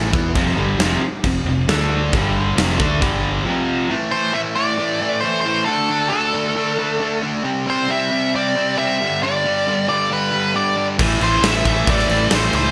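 Bright, 1980s-style digital production with plate reverb and a small-room sheen frames this heavy, driving hard rock fragment, built on a crunchy overdriven guitar riff bathed in lush chorus that runs throughout. A huge arena kit with gated reverb, punchy kick and bright crash, a growly fingered bass and a tight distorted second guitar play at the start, then drop away until 11.0 seconds. From 4.1 seconds a dark, nasal lead guitar with a parked wah carries the melody up front over chords moving from A5 through D5, C and G.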